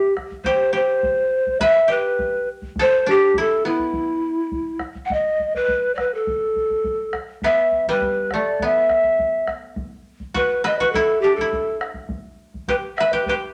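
Breathy, hollow cane pan pipes carry the melody up front over a dry, woody fingerpicked koto second line, joined at 0.2 s by a deep, dark bombo, in this earthy, wistful Andean folk piece cut from a longer work, moving in E minor at 103 BPM in 2/4 through three short sections and set in a wet studio reverb.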